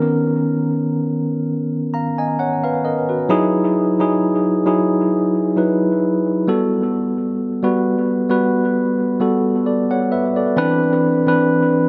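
A bright, clean tine electric piano plays solo, up front and heard through its built-in speakers, in this smooth, dreamy R&B fragment cut from a longer piece, its lightly swung 16ths in 4/4 moving from Bmaj9 to Emaj9 at 3.3 seconds and on through Gmaj9 and Cmaj9, tuned to A4 = 438 Hz and steeped in analog delay and a moderate plate reverb that leaves the mix echo-heavy.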